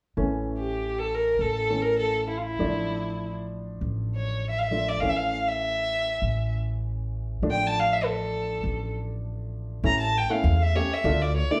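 A warm upright piano and a thumpy, gut-strung upright bass played pizzicato open this festive yet soulful klezmer fragment in free time. A dark, bowed violin with vibrato enters up front at 0.6 s, carrying the melody over harmony that shifts between A and D minor colours above an A in the bass. The trio sounds like a band playing live in one room, bathed in a large, wet studio reverb, with the violin's line closing over a final move to D minor near 11.1 s.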